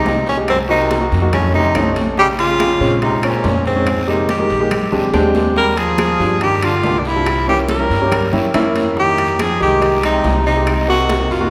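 A smooth tenor saxophone with light vibrato carries the melody up front in this driving, sophisticated Afro-Cuban jazz excerpt in F minor at 141 BPM, joined in the background by a buzzy, breathy trombone in a metal mute and supported by a natural-sounding baby grand piano and a woody pizzicato upright bass. Bright, damped congas and a raspy guiro sit in the background, while tight bongos, ringing metal-shelled timbales and dry claves stay very quiet beneath the rich chords. A drum fill breaks in at 5.1 seconds and the piano takes a fill at 8.1 seconds, all bathed in the long, wet reverb of a church.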